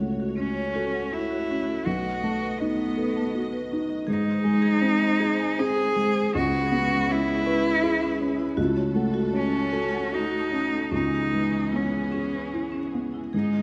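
Longing and melancholic, this neoclassical piano and strings passage drifts in a rubato 3/4 at 73-82 BPM in C# minor, cut from a longer piece and set in a moderate concert hall reverb. A soft, boxy felt-muted upright piano sits up front as intimate, dark accompaniment, alongside smooth, even sustained chords from a rich bowed string section and dry, close-miked marimba arpeggios in the background. From 0.4 s a single clear, focused cello sings a vibrato second line up front over chords moving from F#m/C# through B7 and G# to C#m7.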